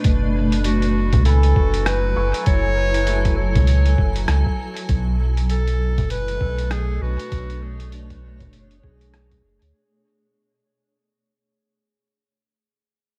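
A deep, spacious ambient dub excerpt at 99 BPM opens on a blurred, evolving granular pad over F#m9, with a round, up-front sine sub bass, a muffled, thumpy, overdriven kick sitting in the background, and a pitched-down, lo-fi kit of congas, hi-hat and rim click carrying dub echo, all on a swung 4/4. A bright, classical-style solo clarinet with tape echo enters at 0.6 seconds, followed by a thumb-plucked, ringing concert harp playing arpeggios in the background. The harmony moves to Bm9 at 4.9 seconds while the whole piece fades out beneath light reverb and vinyl crackle.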